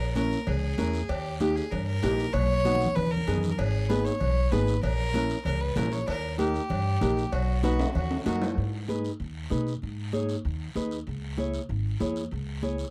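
Driving and danceable, this short cut from a longer cumbia moves at 192 BPM in G# minor, with a dry, close 1970s-style studio sound. A woody, thumpy pizzicato upright bass and a fingerpicked classical nylon-string guitar sit up front, while a clear, earthy bowed fiddle carries a second line until 8.6 seconds, and bright, high-tuned congas in the background play alongside a raspy guiro. Ringing metal-shell cowbell and timbales, distant in a large room, play until they drop out at 8.5 seconds, as the harmony cycles through A#dim, D# and B to G#m and then C#m.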